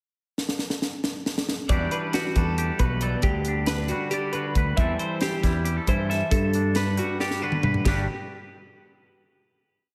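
A crisp fusion drum kit opens this playful, intricate math rock and midwest emo piece in 7/8 with a fill from 0.4 s, its punchy kick and high-tuned snare up front, before a twangy electric guitar with slapback echo plays syncopated fingerstyle accompaniment, a bright, compressed twelve-string electric guitar spins a picked arpeggio ostinato through spring reverb and slapback echo, and a growling, overdriven fingered bass locks to the kick from 1.7 s, moving through Em9, Gmaj7/D, C6/E and Gmaj9 in a lush hall and big arena sound to a final chord at 7.9 s.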